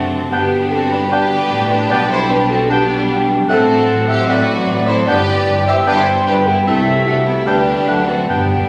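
Classical orchestral music at 151 BPM in G major, restless and urgent, cut from a longer piece and heard through a wet concert hall reverb as if captured on a phone in the room. A distant, lush violin section carries the melody alongside a second violin line, a pure metal-toned flute, a present cor anglais and a punchy clarinet, while a smooth viola section and a very quiet bassoon fill the middle. Mellow French horns and a dark, very quiet trombone section sustain chords beneath mellow trumpet stabs, with cellos and portamento-tinged double basses anchoring the bass, before timpani on medium mallets add a fill at 8.3 seconds.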